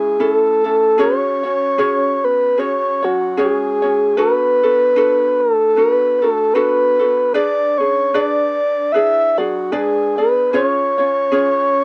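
Sunny and relaxed, this short Hawaiian fragment sways with a gentle swing as a breathy, flute-like synth lead carries the melody up front, its soft attack, sustained notes, vibrato and chorus shimmer giving it a hazy sweetness. Beneath it, a bright, lightly fingerpicked ukulele accompanies throughout, moving through chords such as Amaj7, F#sus2, Bm7 and G#dim before landing on C#. Both parts carry a cassette-tape softness, and the snug booth ambience lends the whole a cozy, homemade intimacy.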